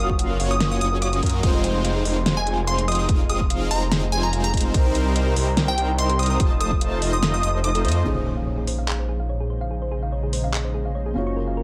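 Lush and glassy, this dreamy, emotional future bass excerpt in Bb minor at 145 BPM with a half-time feel opens on a drop where a crystalline wavetable pluck melody, a round, tine-like synth pluck arpeggio, a smooth supersaw riff and a thick detuned saw bass all pump with sidechain over a punchy electronic kick and an up-front pop kit with fat snare, handclaps and metallic hats. The kick drops out at 7.6 s, a felt-muted upright piano enters at 8.0 s, a background impact lands at 8.1 s on a Bbm11 chord, and a shimmering, ethereal pad arrives at 9.1 s while a filter sweep moves across the arpeggios.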